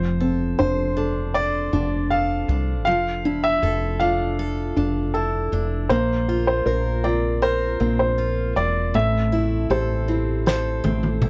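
A light reverb frames this hopeful, emotional pop ballad excerpt, where a clear, polished baby grand piano carries the melody up front with a slapback echo over a felt-muted upright piano's soft, mellow accompaniment, full-bodied arpeggios from a picked dreadnought steel-string acoustic guitar and a round, dark fretless electric bass coloured by analog chorus, as the chords move from F6 through Dmadd9/F and Bbsus2 to Am7 before a loose indie drum kit with a fat snare and toms enters for a fill at 10.5 s.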